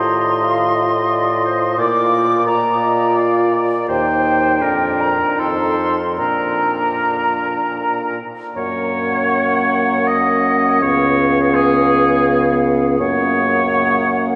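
Serene and lyrical, this slow romantic movement for wind quintet unfolds in a flexible, rubato 3/4 at around 73-89 BPM, cut from a longer piece. The silver concert flute carries the melody with a pure, metallic tone, soft attacks and vibrato, while the oboe sings a warm, roomy second line that sits up front in the blend. Beneath them, the clear French horn and the mellow, distant clarinet fill out the accompaniment, the horn shaded with light vibrato and the clarinet set further back. The bassoon anchors the bass with a close, mellow voice, present and up front. The opening section rests in Bb major over gentle cadential harmony, then at 8.6 seconds the music shifts to F# major for a contrasting passage that settles back onto its new home chord at 13.0 seconds. A long, wet cathedral reverb surrounds the ensemble, giving the recording the spacious glow of a church or concert hall.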